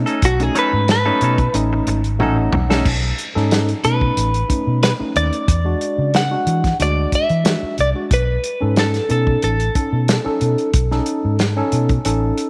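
Gritty and rollicking, this straight-eighth soul blues excerpt moves from B9 to E9 and back, with a dry, muffled drum kit and a round, foam-muted fingered electric bass sitting up front. A compressed clean guitar plays stabs through the opening until 2.9 seconds, alongside a clean guitar solo, as fills from the worn, slightly out-of-tune tine electric piano and the drums lead into the next section. A twangy, bright clean guitar carries the melody with subtle chorus and slapback echo, and the recording sits in a moderate echo chamber reverb.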